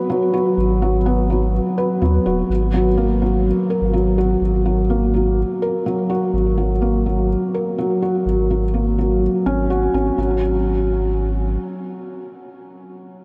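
Soaked in a huge, dreamy reverb with an 8.4-second tail, this short piano-and-strings electronica piece moves at 125 BPM in a straight 4/4, melancholic and hypnotic. A felt-muted upright piano, soft, dark and intimate with audible action noise and short sustain, repeats a delayed riff up front from 0.0 seconds, while a round, sine-like sub bass enters at 0.6 seconds and drops out at 11.6 seconds. The harmony moves from G#m7 to F#add9/G#, then shifts to F#sus2/G# at 10.2 seconds.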